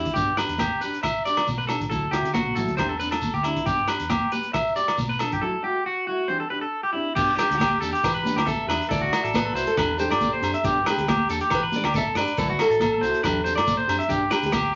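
A twangy, slightly broken-up electric guitar sits up front with picked arpeggios in this carefree highlife excerpt in G major at 138 BPM, over fingerpicked nylon-string accompaniment, a round foam-muted fingered bass, a dark soul drum kit with punchy kick, rim click and hi-hat, ringing agogo bells, high-tuned congas and a grainy, distant shekere, with a bright fingerpicked steel-string acoustic guitar taking the melody from 7.4 seconds after a break at 5.4 seconds.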